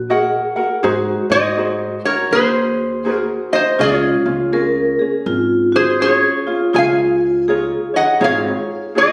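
Swung eighths in 4/4 carry this relaxed, dreamy Hawaiian fragment, where an up-front metal-body resonator slide guitar, fingerpicked and nasal yet mellow, sings the melody over a second line from a ringing vibraphone with medium mallets and fast motor vibrato, a light fingerpicked ukulele picks out the Ebm, Ab7 and Db changes up front, and a woody, thumpy pizzicato upright bass on gut strings drops out at 8.5 seconds, all caught on a phone in a recital hall and bathed in studio reverb and compression.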